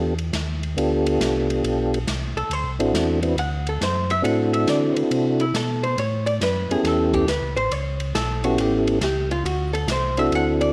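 Greasy and bluesy, this soul jazz organ trio swings at 138 BPM in 4/4 around D mixolydian, a short cut from a longer piece. A percussive tonewheel organ carries the melody from the start, its soft, flute-like tone sitting up front with second harmonic percussion, chorus vibrato and a slow rotary speaker. Beneath it a second tonewheel organ holds down the bass, round and dark with a light overdrive, also turning through a slow rotary speaker with chorus vibrato. The drum kit joins at 0.2 seconds with hi-hat, ride, a medium-tuned snare and a punchy kick, sounding airy and polished as if in a hall. At 2.4 seconds a miked archtop guitar enters, clean, picked and compressed, with the dusky body of a hollow-body instrument, while the harmony moves through G9, D9 and A9 chords. Light reverb and a small room ambience frame the group.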